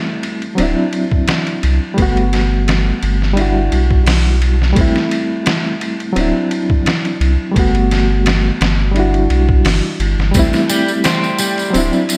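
Trip hop at 86 BPM in A dorian, dark and melancholic, where a bright, reedy electric piano with tremolo and tape echo opens at 0.0 s over Am7, D9, Gmaj9 and Em9/G chords, joined by a gritty, pitched-down sampler-style drum kit with a thumpy kick and overdrive, a deep, round sine sub bass up front, and late touches of tambourine at 10.3 s and a slightly broken-up electric guitar arpeggio with 12-bit grit and diffuse ambient delay at 10.7 s, all soaked in a dreamy, lush hall reverb in this short cut from a longer piece.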